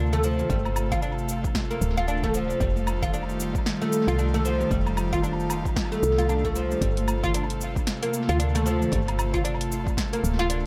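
Organic downtempo at 114 BPM in 4/4, with a lightly swung sixteenth-note feel and a warm, meditative mood, heard here as a roughly 10-second piece of a longer track. An up-front oud, plectrum-plucked with double strings and a woody, fretless tone, plays arpeggios through analog delay. Beneath it sits a round, dark FM bass with a fast, decaying attack. An airy, breathy pad with a chorused noise layer holds sustained chords and pumps from sidechaining, moving from G9sus4 to F9 at 2.6 seconds and Gm11 at 6.8 seconds. A deep house kit of cabasa, hi-hat, punchy snare and woodblock is overdriven and fed through dub echo, joined by an overdriven electronic kick entering at 0.5 seconds and very quiet, band-limited vintage congas played with hard hands. A moderate spring reverb and digital ambience shape the echo-heavy mix.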